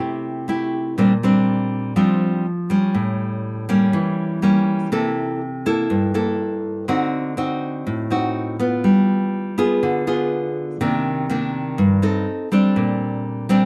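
A fingerpicked nylon-string guitar, full-bodied and up front, plays alone through this short bossa nova cut, its breezy, sophisticated mood carried by chords such as Bb69, A7b9 and Cm9 in a small room with moderate reverb and some lossy compression artefacts.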